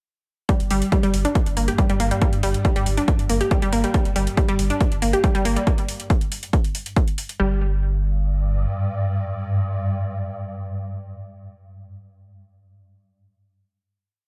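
A detuned sawtooth unison pluck, gritty with tube saturation, 12-bit sampler grit and tape echo, plays a repeating 16-step riff in G minor up front in this dark, industrial peak-time techno piece at 139 BPM, over a punchy four-on-the-floor kick, metallic programmed hi-hats and a round sine sub bass rumbling between the kicks, with the pluck, hats, bass and a swarming, granular drone all pumping to the sidechain, the drone entering at 1.6 seconds and lingering through the final note that follows the groove's end at 7.4 seconds until 11.7 seconds.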